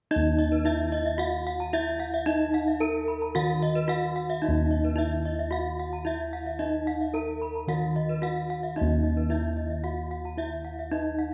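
A reverberant recital-hall sound frames this shimmering, brilliant excerpt of Balinese gamelan in Eb pelog at 111 BPM, where a ringing bronze metallophone melody and a second metallophone's airy arpeggios, both struck with horn mallets and sharing paired tuning's beating shimmer, sit up front over a round, dry, close-miked bass line on bossed gongs, all three playing from 0.1 to 11.3 seconds through a repeated section.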